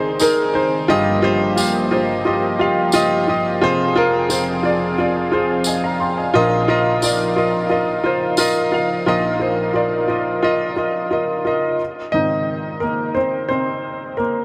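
A straight 4/4 pulse at 88 BPM carries this anthemic, uplifting piano-driven pop excerpt, with a woody, up-front upright piano laying down accompaniment over a smooth, warbling vintage analog pad of detuned, wave-folded chords and a jingly, band-limited acoustic tambourine that drops out at 8.5 seconds. Moving through Ab, Fm and Bbsus4 harmonies, the pad sustains with a soft attack and chorus until 11.8 seconds, when the natural-sounding piano, touched by subtle chorus, carries on alone over an Abadd9 chord. A huge ambient reverb soaks the whole dreamy mix.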